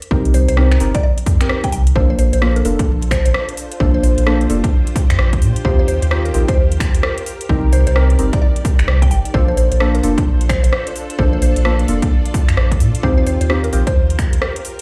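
Bouncy and soulful, this cut from a longer two-step UK garage track rides at 130 BPM in Bb major with a swung 16th-note feel, moving through Cm7, Bbmaj7 and Eb69 chords. A punchy, overdriven electronic kick and a thick, saturated sub bass sit up front, while a house kit of finger snaps, metallic hi-hats and rim clicks, deep dark chord stabs with chorus and tape echo, and a woody, round mallet-like pluck melody with chorus and phaser fill out the groove. At 2.9 seconds a silky vintage string machine enters with slow-blooming sustained chords and sidechain pumping, all heard as if played on a big sound system in a bare room with large studio reverb and vinyl crackle.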